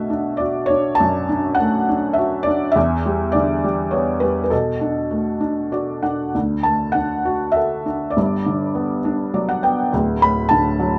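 A felt-muted upright piano, soft and intimate with audible action noise, sits up front in light reverb in this brooding classical excerpt, played solo and rubato in 3/4 at about 102 BPM. It opens in B minor, moving through Bm7 and Em7 chords, before a short fill at 5.4 seconds leads into D major at 6.3 seconds, where Gmaj7 colors the harmony. A second fill at 9.0 seconds returns to D, keeping the mood moody and mellow across the piano's span from D1 to B5.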